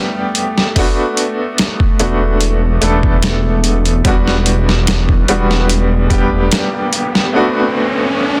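A bright, woody upright piano with tremolo, tape echo and 12-bit sampler grit opens this smoky, cinematic trip hop excerpt in E minor at 73 BPM over a very quiet, tense string-like drone; a gritty, overdriven soul sampler-style drum kit with a thumpy kick joins at 0.3 seconds, a deep, rumbling detuned saw bass follows at 2.0 seconds, and an electronic riser enters at 5.7 seconds, all set in light reverb and a dense, heavily limited master as the harmony moves between Em7 and Bm7.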